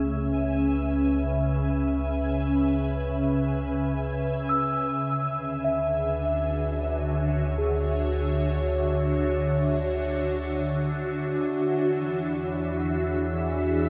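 A bright, morphing wavetable pad sits up front in this weightless ambient piece, its detuned unison chords washed in ensemble chorus, phaser and reverb while a filter sweep runs through its first 11.5 seconds. Beneath it, a round, deep analog bass holds low sustained notes, and a delicate, bell-like celesta with tape echo plays arpeggios in the background until 11.5 s, alongside a twinkling granular shimmer that fades out over that same span. A vast cathedral reverb surrounds it all as the harmony moves from C#m7 through Dmaj9 to E7.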